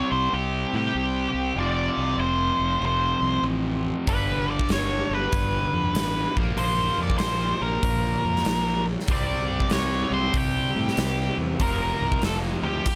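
A swung 4/4 groove at 96 BPM drives this raunchy, swaggering cut of blues rock power trio and southern rock, taken from a longer piece, with a bright, double-tracked distorted rhythm guitar riffing up front over a growly, overdriven fuzz bass through chords moving from C5 and F to G, Bb5 and back to C5 and F5. A dark octave-fuzz lead guitar with wah and distortion carries the melody from the start, and at 4.1 seconds a huge arena drum kit crashes in with a punchy kick, bright cymbals and a pumping hall sound. Light reverb rounds out the mix.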